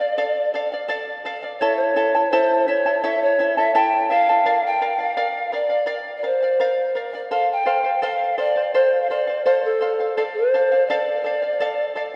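A mellow, airy pan flute with a woody tone, vibrato and a soft attack carries the melody from the first moment, with a fingerpicked charango shimmering on its double strings alongside it, both placed up front. This festive yet melancholic Andean folk piece moves at 84 BPM in a straight 4/4 in D minor, tuned to A4 = 442 Hz, cycling through Dm, A, Bb and F before returning to Dm. A lush church reverb with a 3.5-second tail surrounds the pair, giving this short cut from a longer piece a spacious, hall-like glow.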